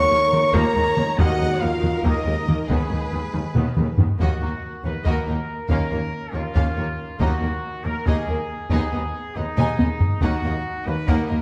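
Driving 7/8 eighths at 279 BPM push this relentless, heroic Eb minor film-score cue, where close, heavy-stick taiko thunder in from 0.3 s after hard-mallet timpani open it, the timpani falling away by 1.8 s, while bright trumpet stabs ring over present, sustained French horn chords, lush vibrato violins carry a soft-attack melody above a focused second line, and rich, even violas, distant cellos and double basses hold the low accompaniment, all bathed in a wet scoring-stage reverb.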